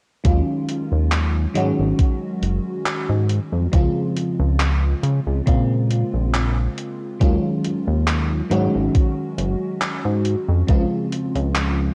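Vaporwave with a melancholic, nostalgic mood, this short cut from a longer piece moves at an unhurried pace with a slight swing on the sixteenths. An FM electric piano layered with a soft pad carries the chords, its dreamy, detuned tone treated with phaser, lush chorus and tape echo, cycling from Ebm11 through Ab7sus4 and Dbmaj7 to Bbm9 and back. Underneath, a glossy, chorused synth bass mixes pulse and sawtooth waves with a plucky filter and a touch of tube saturation, sitting up front and fairly prominent. A thumpy electronic kick drum sits up front in the mix and drops out at 10.9 seconds. A gated 80s digital drum machine adds handclaps and hi-hat bathed in gated reverb, re-recorded in a small room. Light reverb and the worn, warbling pitch drift of an old cassette tape give the whole clip its faded, dreamlike haze.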